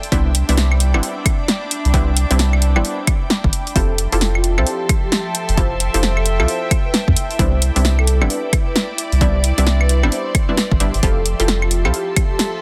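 A dense, heavily limited modern mix set in a digital ambience opens this sunny, bouncy two-step UK garage cut, taken from a longer piece and moving at 132 BPM in 4/4 with a swung sixteenth-note feel in F lydian. Up front, an overdriven electronic kick and a punchy analog drum machine of claves, hi-hat, rim click and snare sit dry and forceful, while a soft, round dub sub bass with tube saturation holds the low end. A detuned, wave-folded chord stab adds bright, plucky hits coloured by chorus, 12-bit sampler grit and dub echo, moving between Cmaj9 and Fmaj9. Behind them, an ethereal, airy pad with ensemble chorus, built-in reverb and sampler grit pumps with sidechain compression, as does a distant, reedy string section with light vibrato and a gut-string tone. From 3.8 seconds a mellow vibraphone played with soft mallets, motor off, drifts in the background through dub echo, carrying the melody until just before the close.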